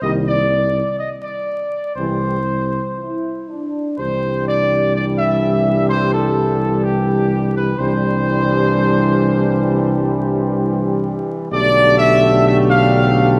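Triumphant and majestic, this classical brass excerpt moves at a stately 64 BPM in 4/4, shifting from C mixolydian to C major at 4.0 seconds. An up-front trumpet section carries the melody with a soft attack and smooth top, while a bright, tight trombone section and a vintage-toned French horn section hold sustained chords in the background, all over a mellow solo tuba bass. The brass share a light vibrato, bathed in a lush concert hall reverb with a layer of vinyl crackle, and the harmony settles on Gadd9/B at 11.5 seconds.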